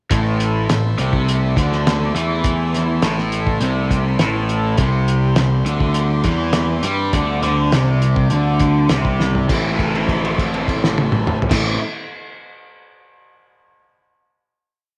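A crunchy, double-tracked overdriven guitar drives this short psychedelic rock piece at 102 BPM in A minor, playing a single-note riff through a phaser while a fuzz-driven picked electric bass doubles it in driving eighth notes. Beneath them a cloth-damped, thuddy acoustic drum kit keeps a straight 4/4 beat with a fat snare, tight kick and dark, muffled cymbals, its gritty, lo-fi sound rolled off at the top. In the background a vintage combo organ holds buzzy sustained chords bathed in spring reverb, lending the mysterious, trippy mood its haze. The harmony moves from A minor to a C power chord at 4.8 seconds, and a drum fill at 9.2 seconds breaks the groove. The riff gives way at 9.5 seconds to a final A minor chord held until about 11.5 seconds, all set in a small room with light reverb.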